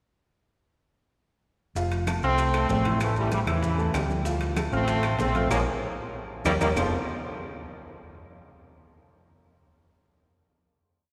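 A bright, tight trombone section leads this short, sunny and danceable salsa piece with hook phrases partly doubled in thirds, over a dark, round hollow-body electric bass playing a tumbao that anticipates the chords, a piano montuno in octaves in the background, and a percussion bed of congas with slaps and open strokes, very quiet high-tuned bongos, ringing metal-shell timbales, a woody two-bar clave line and grainy maracas, the band set in a wet church reverb, with a drum fill and band accent from 5.5 s leading to a final F6 chord at 6.8 s.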